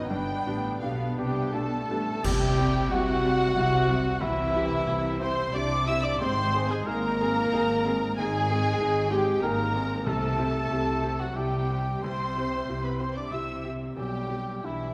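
Moving and tender, this rubato cinematic film-score excerpt in 3/4 sets a veiled, con sordino violin section on the melody over second lines from a lush, muted violin section, a mellow cor anglais, a hollow concert flute and a clear clarinet that stops at 1.9 s, while a natural-sounding baby grand piano and a dark viola section accompany, a French horn section holds smooth-topped sustained chords, cello and double bass sections carry the bass, bright clash cymbals with concert bass drum mark an accent at 2.2 s, round timpani sound briefly at 10.1 s, and wet concert hall reverb fills the space.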